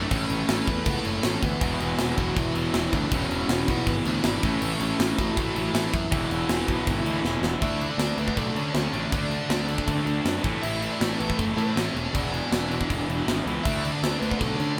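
Punk rock at 160 BPM, energetic and rebellious, cut from a longer piece: an overdriven biting lead guitar carries the melody over riffs from a very quiet distorted electric guitar, a sludgy distorted guitar set in the background and a double-tracked high-gain guitar that joins at 1.6 seconds, while a growly fuzz picked electric bass and an up-front, polished drum kit with bright cymbals and a tight kick drive the band, and a drum fill at 7.2 seconds launches a new section at 7.6 seconds, all played live in one room with light reverb.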